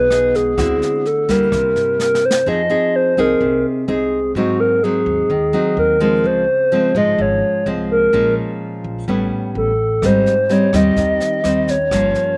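Smooth and melancholic, this straight-feel bossa nova excerpt at 127 BPM sets an up-front reedy FM lead, carrying the melody with chorus, slapback echo, vibrato and a sub octave, over fingerpicked nylon-string guitar with audible finger squeak, a woody, growly pizzicato upright bass and a brushed jazz drum kit with a boomy kick that plays only at the start and again from 10.0 s, all in a dry, roomless outdoor sound moving through rich chords from Emaj7 to Abmaj7.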